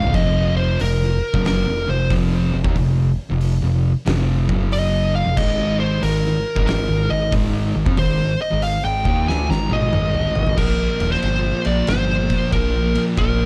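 A dark, small-room production frames this brooding, hypnotic stoner and doom metal excerpt at 92 BPM with a swung 4/4 feel, where an up-front, compressed fuzz lead guitar with digital delay solos over two dark background fuzz guitars playing the riff, a growling overdriven picked bass, and an oversized low-tuned drum kit with a fat snare and punchy kick, whose fill from 9.3 seconds leads into a new section at 10.6 seconds.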